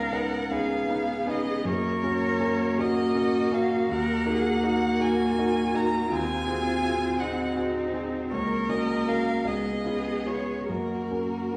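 This excerpt from a slow, lyrical romantic movement for piano quartet opens with all four players together, sounding in F# major in 6/8 at roughly 47-57 dotted-quarter beats per minute with a freely breathing rubato. A single bowed violin carries the melody with smooth, even vibrato. Beneath it, a single rich cello sings an expressive second line with soft attacks and portamento, while a focused viola fills in the accompaniment. The violin and viola sound rich and distant, and the whole ensemble is set back in a wet recital hall whose reverb lingers for about 1.7 s. The grand piano, by contrast, sits up front, clear and intimate, with its action noise audible as it spans from deep bass to the middle register. The harmony moves gently from a C#9 through D# minor and a G#7 before a C#7 settles home on F# at 10.7 seconds, in a tuning pitched slightly low at A4 = 436 Hz.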